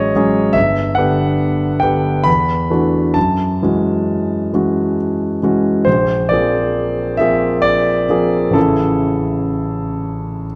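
Impressionist classical solo piano, hazy and serene, unfolds at a slow 68 BPM in 3/4 with uneven, rubato phrasing, in a brief passage lifted from a longer piece. A concert grand plays alone for the full 10.6 seconds, spanning G1 to B5, and it sounds clear, intimate and polished, with deep bass, long sustain, up-front presence and audible action noise. Moderate scoring-stage reverb and a dark, warm production frame its drifting harmonies, which move from F#m9/A through Gmaj7, E9sus4, F#m9 and Bb9 before settling on Amaj7.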